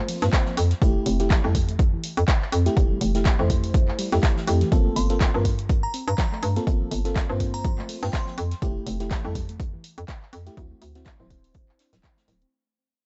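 A dry, transformer-saturated mix with a dulled top end carries this moody deep house excerpt at 123 BPM in G dorian, swung on the 16ths and fading out from 4.7 seconds as it moves through Gm11, Fmaj9 and D9 chords. A punchy, up-front electronic kick and a hollow, bouncy FM bass with tube saturation drive the groove under sidechain pumping, while a deep house kit adds handclaps and dark hi-hats and a distant, roomy brush kit plays soft hi-hat and snare in the background. A mellow FM electric piano plays stabs and a gentle, round pluck plays arpeggios, both with chorus and tape echo, and a crystalline synth bell plays a brief melody between 5.0 and 8.4 seconds.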